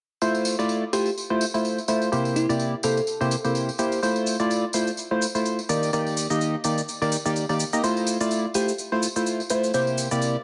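Piano house at 126 BPM in F major with a gentle 16th-note swing, joyful and feel-good, built on an up-front, hollow percussive organ stab riff with subtle chorus and digital delay cycling through Fmaj7, C7 and Ebmaj7 chords. Underneath sit a tape-warm electronic shaker with a low-pass filter and studio reverb, and a vintage, band-limited acoustic tambourine blended with maracas and group handclaps. A sparkling, bell-like FM electric piano adds a background melody with chorus and delay from 0.9 to 3.5 seconds and again at 8.6 seconds, all within a moderate plate reverb and a slightly dulled top end in this short cut from a longer track.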